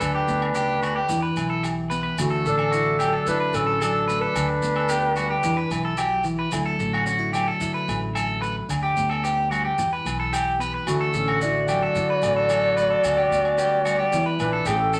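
Highlife guitar band music with a warm, joyful mood, cut from a longer piece and moving in a straight 4/4 over a gently cycling progression of G/D, Em and Dadd9. A breathy clarinet carries the melody with vibrato, subtone, a soft attack and scooped notes in a smooth jazz style, while a mellow trumpet, set in the background, adds a second line in the same breathy, scooped manner. Both horns drop out at 5.8 and 5.9 seconds and return together at 10.9 seconds. Underneath, a fingerpicked nylon-string guitar supplies classical-flavoured accompaniment with audible finger squeak, and an up-front electric guitar at the edge of break-up spins bright, twangy, picked arpeggios. A woody pizzicato upright bass anchors the low end, agogo bells ring from a small-room distance, and grainy, band-limited maracas add a vintage texture, all bathed in a wet studio reverb.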